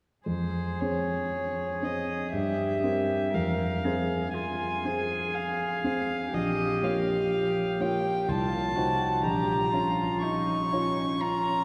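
Solemn and elegiac, this slow, romantic movement for piano trio moves at 60 BPM in 3/4 with a rubato feel, in F minor. It is a passage cut from a longer piece. From 0.3 s, a single violin carries the melody up front, its tone warm and floating with a soft attack, played sul tasto. Beneath it, a lone bowed cello, also sul tasto, sings a pure, smooth-topped second line, while a dark, mellow grand piano, placed close and present, provides the accompaniment. The whole trio sits in a wet cathedral reverb with a long five-second decay, as the harmony moves from F minor through C7 over G back to F minor, then on to B-flat minor, F7 over C and B-flat minor again.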